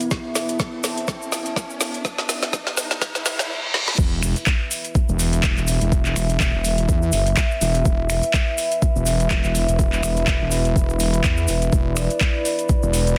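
Bass house at 124 BPM with a swaggering, aggressive swing, this excerpt opens on a build-up where an electronic riser, reverse cymbal and drum fill climb over a filter-swept dark analog pad, a warbly, nostalgic tape-like pad, a grainy cabasa, an overdriven, knocking kick and a garage kit of woody snare, metallic hats, snaps and claps. It then drops at 4.0 s into a heavy, saturated wobble bass pumping against that kick and kit, all in a dense, heavily limited mix.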